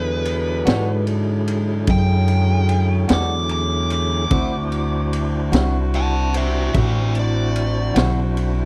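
A smooth, overdriven lead guitar solos through this gritty, laid-back slow blues at 49 BPM in 12/8, moving from E9 to D9 at 4.3 seconds, over a woody, growly upright bass up front, a fat tonewheel organ with key click, slow rotary speaker and chorus vibrato, a soft-attack horn section in the background, a clean picked electric guitar with harmonic tremolo entering at 0.7 seconds, and a saturated garage drum kit of punchy kick, high-tuned snare and ride cymbal, in a dry, close 1970s-style studio sound.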